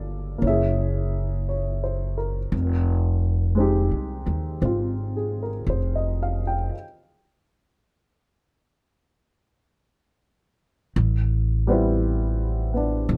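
A jazz ballad with a swung feel, intimate and melancholic, taken from a longer piece. An upright piano with a woody, slightly detuned tone and short sustain plays the accompaniment up front. Beside it, a thumpy pizzicato upright bass on gut strings anchors the low end in a dark, dry production, and the music halts for a stop from 6.7 to 11.0 seconds before a new section begins.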